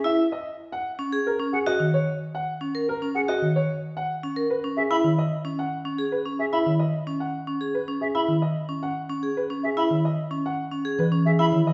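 Heard from further back in a reverberant recital hall with a softened top end, this short cut from a longer minimalist classical piece has a propulsive, hypnotic pull. A concert grand piano carries the melody from the start, its tone boxy and up front, with deep bass and short sustain. Beside it, a vibraphone played with medium hard mallets rings out bright, metallic arpeggios, colored by a fast motor vibrato. At 1.5 seconds a silver flute joins with airy, straight-toned arpeggios that have a crisp attack but sit distant in the room. At 1.8 seconds a folk marimba enters low in the accompaniment, woody, dry and rustic, close-miked and full. The music moves in a steady three-beat metre with a straight feel, passing from E to D#m7 and on to C#madd9.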